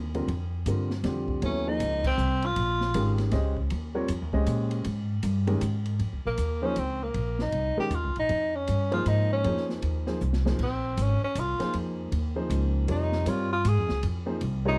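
A woody, pizzicato upright bass opens this intense, spiritual modal jazz excerpt in a swinging triple metre, joined at once by an intimate grand piano with audible action noise and a small-room acoustic drum kit of dark cymbals, medium-tuned snare and boomy kick. The tenor saxophone, distant and roomy yet up front, plays a brief phrase around a band accent at 2.0 seconds, then returns at 6.3 seconds for a solo full of vibrato and subtone, with a short drum fill at 10.2 seconds. Light reverb frames the dark, warm production.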